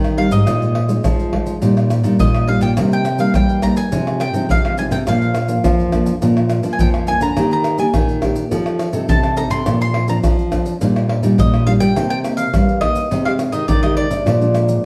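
A picked mandolin carries the melody, its doubled strings giving a warm, woody tone as it moves between D5 and C6 across the full 14.8 seconds of this passage from a longer piece. This is a playful, joyful blend of samba and choro in Eb major at 104 BPM, set in a straight 4/4. Beneath it, one fingerpicked nylon-string guitar supplies warm classical accompaniment, while a second, darker nylon-string guitar handles the bass line, with an audible finger squeak. Tube shaker, pandeiro, tamborim and a deep surdo sit up front with soft hands and a small-room intimacy. The harmony moves through Bb7sus4, Ebmaj7/Bb, Cm7 and Fm7/C before settling on Bb, then travels through Ebmaj7, F7, Bbadd9, Ebmaj7/Bb, Cm7 and Abmaj7/C and closes on Bb7 at 14.3 seconds. A wet large-studio reverb with a 1.1-second decay places the ensemble further back in the room.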